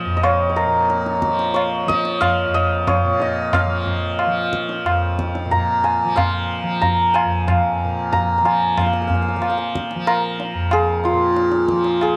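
Introspective and solemn, this Hindustani classical excerpt in raga Malkauns on F moves at 92 BPM in a straight 4/4, with an up-front santur carrying the melody between F4 and Bb5 in hammered, shimmering tones. Beneath it a softly plucked tanpura sustains a buzzing drone from F2 to F3, while a high-tuned tabla with a compressed, saturated edge enters at 0.2 seconds. The whole is set in light, small-room reverb, and the passage shifts into a new section at 8.8 seconds before it is cut off at 12.2 seconds.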